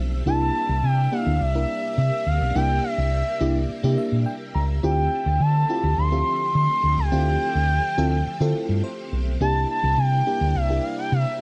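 A straight 4/4 funk groove at 105 BPM sets a funky, slick mood in this short cut from a longer piece, anchored by a dark, round hollow-body short-scale electric bass played up front from 0.0 seconds. Above it, a smooth gliding portamento lead with vibrato, chorus and phaser carries the melody, while a lush, dreamy FM electric piano layered with a soft pad comps and adds fills around 3.7 and 8.6 seconds. A shimmering vintage string machine holds quiet sustained chords beneath, moving from C7 to Dm11 and back to C7 in a digital ambience.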